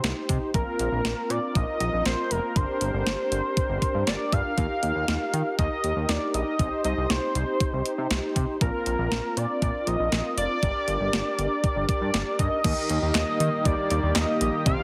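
A bold, up-front octave-doubled lead carries this wistful yet upbeat synth-pop excerpt at 119 BPM in Eb major, its detuned sawtooth-and-triangle tone carrying vibrato, chorus and delay as it sings the melody between Bb4 and F5. Beneath it, a clean 12-bit digital drum machine drives a straight 4/4 with a thumpy kick, medium-tuned snare, handclaps, hi-hat and crash, its sampler-style hits overdriven and re-recorded in a small room. A glossy, retro chorused synth bass sits just as far forward, its wave-folded pulse and sawtooth tone sweeping through a filter. Mellow synth brass fills the middle with a round, dark, detuned accompaniment over a Cm, Bbsus2, Gm and Eb progression. At 12.6 s, as the harmony lands on Eb, a shimmering pulse-width pad fades in softly behind the other parts with a slow attack and ring-modulated sparkle. Light digital reverb surrounds the mix, and heavy multiband compression gives it a dense, radio-ready sound.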